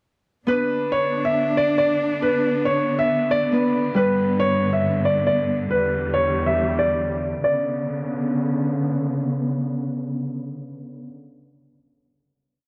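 A dark, low-passed production sits in a small room with light reverb, giving this short, complete drill piece a cold, tense atmosphere over a half-time feel. An up-front concert grand piano carries the melody, a looping figure repeated like a sampled loop, its tone open and deep in the bass. Beneath it, a Celtic harp is fingerpicked in mellow, ringing held chords with spread voicing, also looped, until it drops out at 6.8 seconds. A close, muted string section, bowed con sordino with vibrato, spreads a veiled sustained pad under both as the harmony moves from Bm through G and Em7. A filter sweep runs through the opening breakdown, then the piano falls away at 8.7 seconds and the strings hold the final Bmadd9 chord alone until 11.1 seconds.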